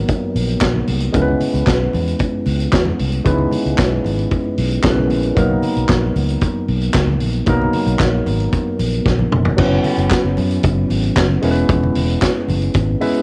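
A straight 4/4 disco groove at 114 BPM drives this sultry fragment, with a gritty, saturated vintage drum kit up front, punchy kick and dark cymbals, a drum fill at 9.1 s leading into a new section on F#7sus4, and very quiet, damped, low-tuned congas underneath. A fingered electric bass with an amped, warm tone holds the low end, while a barky, bright tine electric piano, lightly overdriven through a combo amp with phaser and cassette tape coloring, plays chords moving from Bmaj7 to C#m7 and closes with a short fill at 12.7 s. The home cassette recording carries light reverb and is cut from a longer piece.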